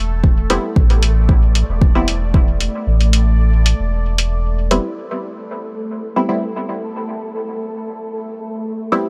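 A round, sine-like sub bass and a bubbling, resonant texture of detuned sawtooth tones with random filter steps open this hazy, cavernous dub techno fragment, both pumping against the beat, while the texture carries chorus and its own reverb. A deep, tape-tinged electronic kick plays up front until 2.5 seconds, joined by muffled, pitched-down, overdriven hi-hats and muted, detuned chord stabs that pluck through chorus, phaser and dub echo over an Am9 harmony. The bass and hats stop at 4.8 seconds, leaving the stabs and the bubbling texture to carry the cut through to its end in a fairly dry room.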